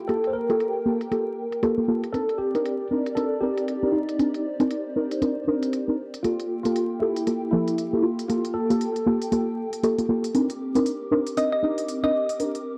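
A swung groove of crisp, layered electronic hi-hats under a filter sweep drives this smooth, late-night deep house excerpt, where a mellow tine electric piano melody with phaser and digital delay plays until 10.0 s over a hollow, flute-like pad in ensemble chorus and up-front, detuned chord stabs moving between Gm9 and Cm9, before a round, thumb-piano-like synth pluck enters at 11.4 s, the whole mix sitting in a dark production with plate reverb and vinyl crackle.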